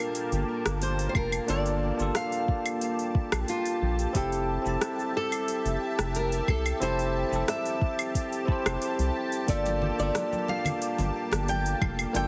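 A fingerpicked nylon-string guitar carries the melody in this relaxed sunset chillout excerpt, its fresh classical strings touched by digital delay. Alongside it, a bright, barky tine electric piano plays clean accompaniment through tape echo, while a lush, detuned unison pad holds slow-attack sustained chords colored by chorus and phaser. A smooth R&B drum kit with metallic hats, cabasa, claves and rim click sits up front with an overdriven edge, and a round, deep analog bass enters at 0.3 s with a dark, sustained tone, joined at 1.1 s by a soft, overdriven electronic kick. Damped, thick-skinned congas slip into the background at 9.7 s. The harmony moves from Gm9 to Fmaj9 and back to Gm9, set in a moderate hall reverb with a heavily compressed, radio-like finish.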